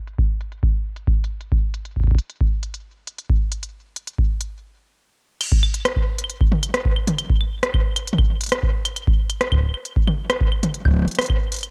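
Playful and intricate, this short IDM fragment in straight 4/4 is built entirely from percussion. An industrial drum kit carries the detail, with crisp hats, claves, crash cymbal, rim clicks and toms, all trailed by a dub echo. Beneath it, a deep electronic kick with an analog, tape-warm weight sits up front, entering at 0.2 seconds. A filter sweep runs through the opening passage until 5.4 seconds, and the groove halts briefly from 4.5 seconds before a new section begins. The mix is echo-heavy and low-pass filtered, set in light reverb with a digital ambience.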